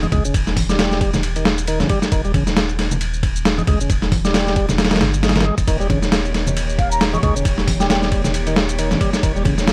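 An energetic, gritty breakbeat excerpt at 135 BPM opens on an overdriven, slow-rotary tonewheel organ riff over a thick saturated sub bass, background congas and shaker, and an up-front, thumpy, overdriven sampler-style drum kit, with earthy chamber strings pumping in at 5.7 seconds and a distant, airy baroque flute melody at 6.8 seconds, all under a dry, vinyl-crackled hardware sound.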